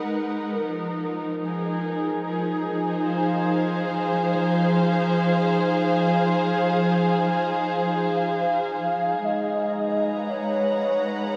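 At a slow 56 BPM in straight 4/4, this serene, reflective ambient passage, cut from a longer piece, drifts over sustained chords, moving from G#m7 to Fm7 and back to G#m7 at 9.2 seconds. A dark, intimate string section holds those chords from the start, its bowed sul tasto tone soft in attack with light vibrato and a smooth top, placed up front and bathed in shimmer reverb. At 8.2 seconds a velvety synth lead enters with a sustained melody, its wave-folded sawtooth and triangle blend thickened by unison, chorus and vibrato, and carried by delay, cassette tape and shimmer reverb. At 10.8 seconds a breathy, wind-like tuned noise layer creeps in, barely audible. The whole sits in a huge reverb with a long 8.9-second tail, and the worn, warbling tape sound gives the pitch a gentle drift.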